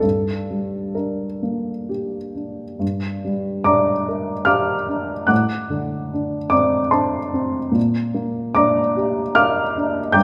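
Set up front in a moderate recital-hall reverb, a woody, intimate upright piano with audible action noise, short sustain and a slightly detuned edge plays alone across G2 to G6 in this stormy, bittersweet romantic character piece in G minor, moving in a rubato 3/4 at 63-78 BPM through Gm, D7/A at 5.3 seconds and Gm/Bb at 7.8 seconds before the passage, cut from a longer piece, breaks off at 10.2 seconds.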